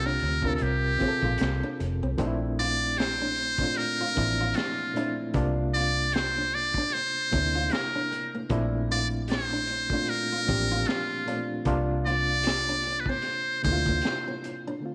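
Sultry and smooth, this short cut of R&B and neo-soul sits at a relaxed 76 BPM in 4/4, with a lightly swung sixteenth-note feel. Up front, a trumpet with a metal mute carries the melody in a brilliant, buzzy, thin tone, played forcefully in a jazz style with light vibrato and scooped notes. Beneath it, a bright, reedy electric piano comps with a fast tremolo, while a vintage fingered electric bass, foam-muted and round, holds down the low end with a punchy, amped sound. A small, fingerpicked nylon-string guitar adds a soft second line in the background, and a crunchy breakbeat kit of hi-hat, high-tuned snare and punchy kick brings saturated grit with a rolled-off top. The harmony moves from C7sus4 into an alternation of Bbmaj9#11 and C9sus4 from 2.2 seconds, all framed by light studio reverb.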